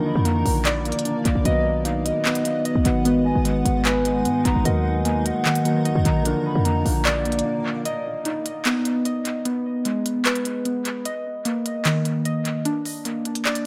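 A half-time trap beat at 150 BPM, with crisp hats and handclaps, drives this brooding, dark hip hop excerpt in Eb harmonic minor, where punchy, tight 808-style bass, worn and slightly out-of-tune tine electric piano, a blurred granular cloud pad in the background and a hollow, woody clarinet-like synth lead with vibrato all drop out by 7.9 s, leaving the muted, intimate felt-like synth key arpeggios and drums to carry on until 13.7 s through a dry, echo-heavy mix.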